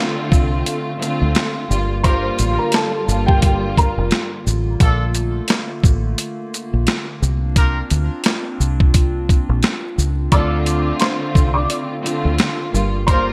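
A gritty, pitched-down sampler-style drum kit sits up front with gated reverb in this tough, reflective boom-bap hip-hop excerpt in D minor at 87 BPM. It has a thumpy kick, high-tuned snare, handclaps, hi-hat and shaker, swung on the sixteenths over Dm7, Gm7, Bbmaj7 and C9sus4 chords. A round, foam-muted fingered electric bass enters with the drums at 0.3 seconds, while a lush bowed string section and a hollow, flute-like pad with chorus carry the harmony. From 2.0 seconds a distant trumpet section adds stabs with digital delay, and a woody, slightly detuned upright piano with audible action noise plays the melody, returning alongside the strings at 10.3 seconds amid vinyl crackle, light small-room reverb and bright 1980s-style digital production.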